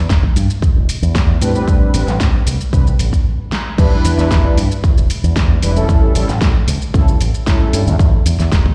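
Cosmic and sleek, this nu-disco excerpt moves at 114 BPM in a straight 4/4, driven from the start by a punchy, up-front electronic kick and a bright, envelope-filtered fingered electric bass, with a layered pop kit adding a fat snare, warm hi-hat, shaker and crash. Mellow synth brass enters at 1.4 s on Am11, its round, detuned sawtooth tone coloured by chorus, vibrato, tape echo and sidechain pumping. A brief stop at 3.3 s carries a drum fill and band accent before the drop lands at 3.8 s and moves through Em7 and A7, the mix set in a large studio reverb that evokes a big sound system in a bare room.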